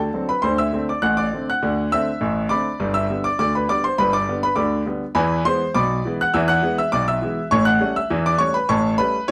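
Ragtime piano in G major at 102 BPM in a straight 2/4, lively and jaunty, heard as a short cut from a longer piece lasting about 9.3 seconds. A clear, intimate grand piano plays alone up front across a span from G1 to F#6, its long sustain and audible action noise giving it a present, close-up character. The harmony moves from D7 through G and E7 to A7, set in a moderate club reverb.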